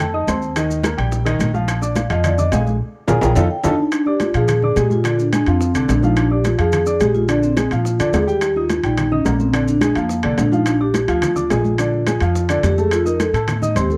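Afro-Cuban jazz at a brisk 214 BPM in Bb mixolydian, this sunny, danceable excerpt from a longer piece features a mellow soft-mallet vibraphone carrying the melody with its motor off, over a natural-sounding baby grand piano and a woody, growly pizzicato upright bass sitting up front. Ringing metal-shell timbales, background congas, very quiet low-tuned bongos and grainy, saturated maracas fill out the percussion, and a drum fill and band accent from 2.8 to 3.9 seconds close the vibraphone's opening solo before the next section begins. The sound is a dry, close 1970s-style studio recording, with harmony moving among F7, Ebadd9, Bb7 and Eb9.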